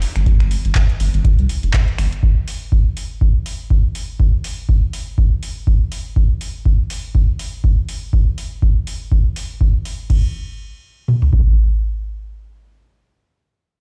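A swung 4/4 groove at 122 BPM drives this hypnotic acid house excerpt, tuned to A4 = 437 Hz, where a booming analog drum machine lays a deep, up-front kick and toms from 0.3 to 11.5 seconds, while a second, quieter kit adds crash cymbal, finger snaps, handclaps and metallic hi-hats, each with small room ambience. A thick, saturated sine sub bass with a fast attack and sidechain pumping holds the low end from F1 to C2 but drops out at 2.1 seconds. The dry, electronic drums sound as if played on a big sound system in a bare room, with large studio reverb around them.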